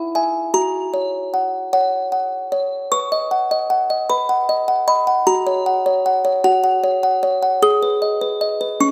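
Tender and dreamy, this brief fragment of a classical lullaby in B major drifts at 51 BPM in a gentle 6/8, tuned to A4 = 443 Hz, with a solo music box from a large box, delicate, tinkling and bright, close-miked and up front with a slapback echo, plucking its melody between C#4 and D#6 over chords moving from E and F# into a second section at 2.9 s that passes through B, F# and G#m, all set in the moderate reverb of a scoring stage.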